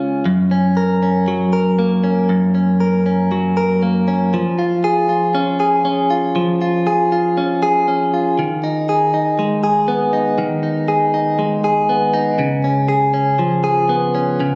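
Captured on a phone in a club-like room with light reverb, this tender, hopeful slow pop fragment cut from a longer piece features a lone bright, clean electric guitar, recorded direct, picked, compressed and up front with spring reverb, moving from F# to G#m/D# at 8.4 seconds and C#7 at 12.4 seconds.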